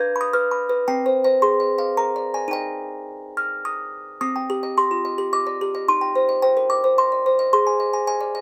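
A classical lullaby for solo music box in a straight 3/4 at 109 BPM, this innocent, dreamy fragment of a longer piece has a delicate, tinkling box sitting up front in a small, moderately reverberant room, its dark, smooth plucked tones spanning C4 to G6 as the harmony settles in Eb major before turning to C minor at 4.2 seconds.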